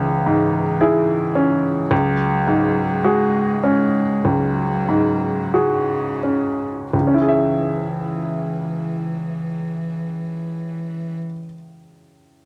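A dry, gritty recording with a moderate studio reverb frames this melancholic, longing fragment of neoclassical music for piano and strings, played in a rubato four and slowing through its first 6.9 seconds. A clear, woody upright piano with a vintage tone and short sustain carries the accompaniment up front, moving from a minor chord to a suspended one and back. A single dark cello, bowed sul tasto with vibrato and a soft attack, sings an intimate second line, close and up front beside it, before falling silent at 11.2 seconds, leaving the piano alone until 12.5 seconds.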